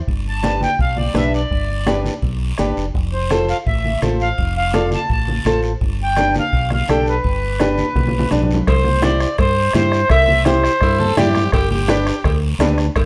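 Cumbia with a danceable, joyful lilt, this short cut from a longer piece sets a reedy, up-front accordion melody over fingerpicked flamenco guitar with audible finger squeak, a dark, round fingered electric bass, a soft-beater bombo, ringing low-tuned congas and a band-limited, vintage guiro, until a drum fill at 8.0 seconds brings in ringing metal-shell cowbell and timbales in the background at 8.7 seconds and a gritty, edgy tenor saxophone line with vibrato briefly appears at 10.8 seconds, all in a moderate studio reverb.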